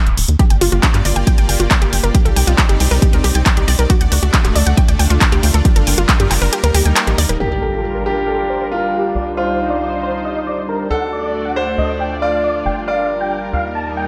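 Emotional and driving, this uplifting trance passage, cut from a longer piece, opens with a punchy overdriven electronic kick, an overdriven house kit of handclaps and hi-hat, a tight saturated sequencer bass, a lush detuned supersaw pad and a delayed unison pluck arpeggio, with the bass, pad, pluck and hats pumping to the sidechain; the kick drops out at 6.5 seconds, and at 7.4 seconds an electronic impact ushers in a huge, euphoric supersaw lead melody under a filter sweep, joined by a brilliant concert grand piano second line with tape echo, all over a moody minor progression in a light reverb.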